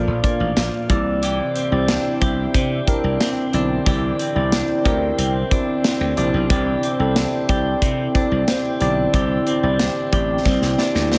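A moderate plate reverb and a touch of small room ambience give this short 1980s-style pop excerpt a polished, slightly airy sheen, with an urgent yet moody feel at 91 BPM in a straight 4/4. A worn, slightly out-of-tune tine electric piano sits up front with subtle chorus, heard through a combo amp as it carries the accompaniment over chords moving from Bb to Cadd9. A growly, punchy slap bass plays with a bright, direct and amped tone, while a clean, picked electric guitar plays a riff bathed in lush chorus and delay. Behind them, a glassy, ethereal FM pad holds sustained chords with a slow attack, ensemble chorus and its own reverb, staying mellow in the background. The modern studio drum kit enters at 0.2 seconds with a punchy kick, medium-tuned snare and hi-hat placed up front, and closes with a drum fill from 10.5 to 11.2 seconds.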